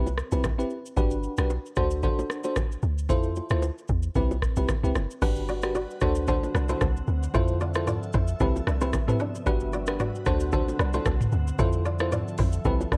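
A bell-like FM electric piano with chorus and tremolo opens over a deep, round log drum bass, a booming analog drum machine with metallic hats and very quiet, close bongos and congas in this breezy, sunny afrobeats excerpt at 113 BPM in G major, before a crisp fingerpicked kora riff with tape echo arrives at 5.2 seconds and a glassy, ethereal FM pad drifts in from 5.5 seconds, all under a worn, warbling cassette-tape haze with light reverb.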